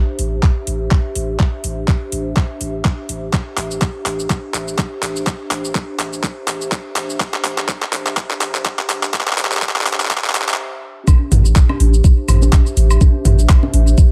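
A swung 124 BPM groove in 4/4 drives this quirky, hypnotic minimal techno cut in A minor, where a knocking, up-front electronic kick and a tape-toned garage kit of handclaps, shaker and metallic hats sit over a punchy sine sub bass with a pitch-drop attack, both the bass and a warbling, detuned, lo-fi pad pumping under sidechain while the pad's chorus and built-in reverb give it a mellow, nostalgic glow on a held Asus4. The opening stretch is a build-up with a drum fill and a filter sweep, cut short by a stop at 10.6 seconds. At 11.1 seconds the drop lands, bringing in overdriven electronic congas, woodblock and toms with delay, re-recorded in a large room, inside an otherwise dry, high-passed mix.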